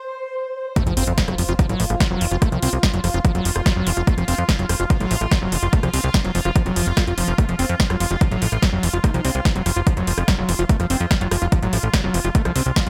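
Dry, up-front and punchy, this driving psychedelic trance excerpt opens on a bright, bubbling stepped-filter pad of sustained chords before the drop at 0.8 s. There, a hard electronic kick, a big-room kit of snare, rim click and metallic hats, a very quiet impact and a squelchy, screaming acid riff soaked in distortion, tape grit and dub echo all hit together, with a funky, ring-modulated analog bass following a split second later. A faint, juicy, detuned blip pluck adds a second line from 7.6 s.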